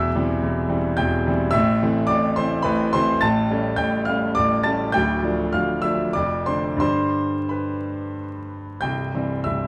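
A romantic character piece for solo piano, this short excerpt cut from a longer work moves in a flowing 3/4 with a rubato feel, its tempo breathing between 85 and 112 BPM. The mood is passionate and lyrical, carried entirely by a clear grand piano that sounds natural and up front, spanning a broad register from C1 up to A6. The harmony travels from C/E through Am and A7 to Dm, then Dm/F and G before settling on C at 8.9 seconds. The instrument is tuned slightly high, with A4 at 444 Hz. A light reverb gives the piano a sense of space, while vinyl crackle adds an aged patina to the recording.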